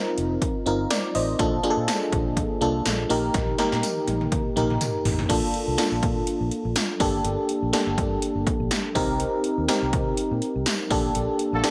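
A glossy, lightly reverberant mix opens this uplifting 1980s-style pop excerpt at 123 BPM in Bb major, where a glassy, bell-like FM electric piano with chorus sits up front over a dark, foam-muted fingered bass, punchy analog pad drums with gated snare and toms and metallic hats, and a jingly tambourine in the background from 0.9 seconds, with a drum fill from 3.3 to 5.3 seconds and a brief, tight stab from a mellow, distant horn section at 11.5 seconds on the closing band accent.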